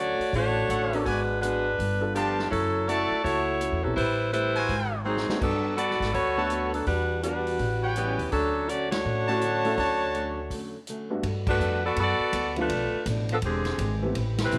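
Joyful and swinging, this big band jazz excerpt moves at 165 BPM in 4/4 with a swing feel, set in D major before shifting to G major at 11.2 seconds. A clear saxophone section with light vibrato and a smooth top carries the melody up front, while a brilliant trumpet section, also lightly vibrato-tinged, punches in with ensemble stabs through most of the passage. Pizzicato upright bass with a woody tone anchors the harmony, and a warm upright piano and a very quiet picked steel-string acoustic guitar with fresh strings fill in the accompaniment. The acoustic drum kit, with a medium-tuned snare and punchy kick, drives things on ride, hi-hat and crash, adding a short fill, joining full-band accents and dropping into a break from 10.5 seconds. The chords are rich and jazzy, moving from Dmaj7 through ninths and a bright A13 before the closing turn through Bm7b5 to E7alt, all set in a small room with light reverb.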